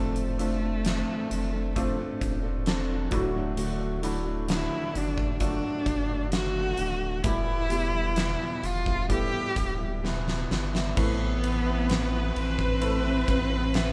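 Pop ballad in A minor at a slow 65 BPM, longing and emotional, where a rich, bowed solo cello with vibrato carries the melody up front over a soft, felt-muted upright piano with audible action noise in the background, a full-bodied fingerpicked steel-string acoustic guitar playing arpeggios, a deep sine-like sub bass with an octave, and a huge arena drum kit with a punchy kick, fat snare and bright cymbals that enters at 0.2 seconds and plays a fill from 10.0 seconds, before a lush studio violin section joins with a second line at 11.0 seconds, all in a light reverb that suggests a band playing live in one room.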